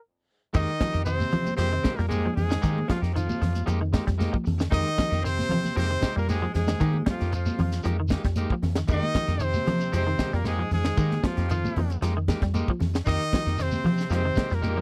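A dry, close 1970s-style studio sound frames this funky, defiant afrobeat excerpt in F minor at 115 BPM, where after a half-second pause a bright trumpet with scooped notes carries the melody over a sustained Fm11 chord, backed by a clear bass trombone and an edgy tenor saxophone, chorus-soaked twangy guitar arpeggios, bright, clean guitar stabs, a round, punchy dub-style fingered bass, a tight, up-front funk kit with high-tuned snare, and grainy shekere and thin-skinned congas in the background.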